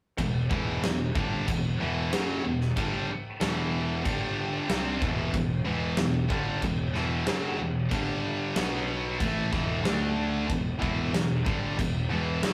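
Hard rock with a heavy, menacing mood, as two bright, distorted picked electric guitars, one tight and up front, the other high-gain, drive a riff over a round, fuzz-overdriven picked electric bass and a huge, punchy acoustic arena kit of crash, kick and medium-tuned snare, all playing together from 0.2 to 12.5 seconds in a rough rehearsal-room recording washed in wet studio reverb, cut from a longer piece.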